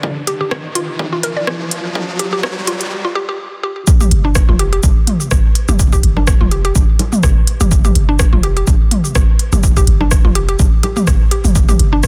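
Minimal techno at 125 BPM, hypnotic and cool, built on a tape-warm, punchy electronic kick and a deep sine sub bass with a pitch-drop attack and sidechain pumping, joined at 0.3 seconds by a woody, round mallet-like FM pluck with chorus and delay and an overdriven techno kit of smooth hi-hats, rim clicks and shaker, while an up-front riser and a filter sweep on the synth lead the build-up into a break at 2.9 seconds and a drop at 3.9 seconds, after which electronic toms and congas with delay arrive at 4.0 seconds, all in digital ambience under a dense, heavily limited modern master.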